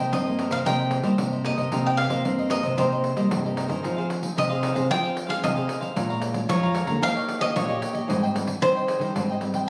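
A bowl-back mandolin with plate reverb carries the up-front, double-strung, picked melody of this bittersweet yet lively samba and choro excerpt in C minor at 113 BPM, joined from the start by crisp, mellow cavaquinho, a thumb-plucked classical nylon-string guitar and a full-bodied, deep fingerpicked nylon-string bass line, with a jingly, close and dry pandeiro entering at 0.1 seconds as the harmony moves from Cm7 to Fm7 at 3.8 seconds and through Bbm7 and Eb7 to Abmaj7, all captured on a phone in a moderately reverberant room.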